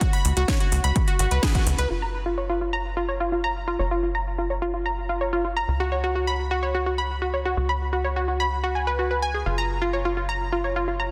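Euphoric and hopeful, this progressive house excerpt opens on a drop where a punchy, overdriven electronic kick and a house kit of cracking snare and metallic hi-hats hit a band accent at 1.4 seconds, with the drums falling away by 1.9 seconds. A round, detuned analog pluck spins sawtooth arpeggios through chorus and dub echo, with sidechain pumping. A tight, driving sequencer bass pulses beneath, also pumping, from 0.2 seconds. After the drums drop out, a filter sweep runs across the bright pluck as the chords move between C#7sus4 and F#maj7 in a lush hall, under a dense, heavily limited master.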